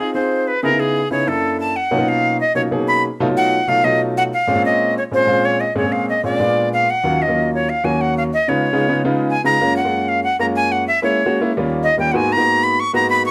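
A breathy, reedy jazz flute carries the melody up front with vibrato and tongued notes, its bright metal tone leading this sultry, fiery jazz excerpt at a brisk 188 BPM in straight 4/4. A warm concert grand piano with deep bass plays the accompaniment throughout, moving through rich altered and extended chords in Bb minor before the music shifts to Eb minor at 7.0 s. A moderate studio reverb gives both instruments a natural sense of room.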